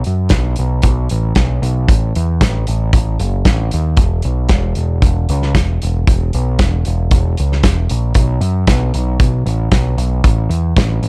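Hazy and dreamy, this short excerpt of shoegaze-tinged rock and dream pop moves at 115 BPM in a straight 4/4, tuned slightly sharp to A4 = 441 Hz. A growling picked electric bass with overdrive sits up front in its low register, joined throughout by a loose indie drum kit of hi-hat, punchy kick and medium-tuned snare that sounds acoustic and close in a small room. The dark production carries little reverb, keeping both parts forward.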